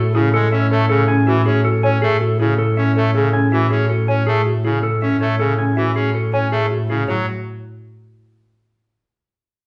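Minimalist classical pattern music in six, bright and hypnotic, where a clean picked electric guitar carries the melody over woody, rustic marimba arpeggios, a smooth bowed double bass with vibrato sits up front on a single low note, and a brassy pipe organ on a trumpet stop adds baroque-voiced accompaniment from 0.1 s, set in a reverberant studio heard from further back until the parts stop at 7.3 s in this passage cut from a longer piece.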